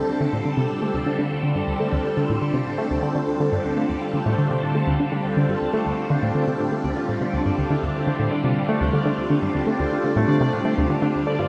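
A tight, driving sequenced synth riff stands out from 0.2 seconds, its detuned sawtooth-and-triangle tone shaped by a filter pluck with a fast attack and colored with chorus, phaser and tape echo. A filter sweep also runs across the whole passage. Beside the riff, up front, a swirling vintage string machine holds sustained D minor chords, its slow attack and long release thickened by ensemble chorus and phaser into a bright haze. In the background, a thumb-plucked concert harp fades in with ringing, mellow arpeggios trailed by tape echo. A bubbling stepped-filter texture also fades in behind them, its resonant sawtooth stepping through random filter changes under chorus and its own reverb. This hypnotic, mysterious ambient passage moves at 122 BPM in a straight 4/4, cut from a longer piece and soaked in a dreamy plate reverb.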